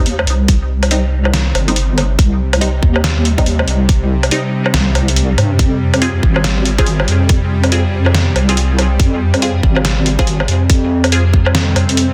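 A dense, heavily limited mix with light digital reverb carries this dark, meditative deep dubstep excerpt in C minor at 141 BPM, felt in half-time with a swung 16th-note lilt and moving from Cm to Fm at 5.6 seconds. A deep, chorused wobble bass sits up front beneath a tense, string-like bowed drone with vibrato, while muted, wave-folded dub chord stabs pluck through a phaser and dub echo. A gritty, pitched-down sampler kit of hi-hat, snare and woodblock enters at 0.1 seconds, a tight, layered electronic kick joins from 0.5 seconds, and an electronic swell arrives at 11.7 seconds.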